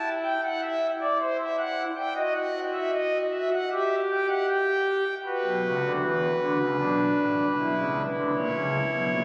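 Serious and solemn, this short passage is cut from a longer classical piece, a baroque-style three-part fugue for pipe organ in E minor at 78 BPM in a straight 4/4. A single pipe organ plays alone throughout the 9.2 seconds on its foundation stops, spanning G1 to G5 with a thick, romantic voicing that sits up front. The harmony moves from Em through C/E, D#m/F#, Em/G, Bm and G before landing on an A#dim chord at 8.4 seconds. The instrument is heard through a drenched cathedral reverb with a long decay of 6.7 seconds, captured on a phone in the room and further shaped by club reverb and compression. The tuning sits slightly low, at A4 = 439 Hz.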